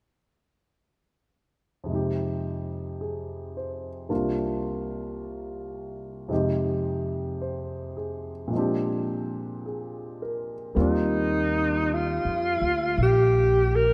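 Romantic and tender, this swung jazz ballad opens with an intimate concert grand piano alone from 1.8 s, its deep bass and audible action noise caught up front, before a punchy, vibrato-laden alto saxophone takes the melody and a woody pizzicato upright bass joins at 10.8 s, set in a lush hall reverb with a rough home-demo mix.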